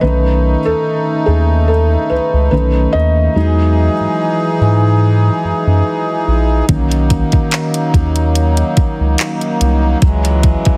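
A felt-muted upright piano carries the spotlight in this excerpt of contemporary R&B, its mellow, intimate tone softened by thick felt and a vintage, smooth character as it plays until 10.0 seconds. The mood is romantic and smooth at 72 BPM in 4/4, with a light 16th-note swing, set in B major and tuned to A4 = 445 Hz. A reedy, breathing pedal harmonium holds sustained chords up front, pumping from sidechain compression, while a round analog bass with a deep, dark sine-like body and a quick filter pluck anchors the low end. A produced electronic drum kit enters at 6.7 seconds with a soft kick, warm hats and handclaps sitting close to the listener. The harmony moves from B7 to Emaj7, then Bmaj7, landing on C#m. Studio reverb surrounds the parts, and heavy multiband compression gives the whole mix a dense, radio-ready sheen.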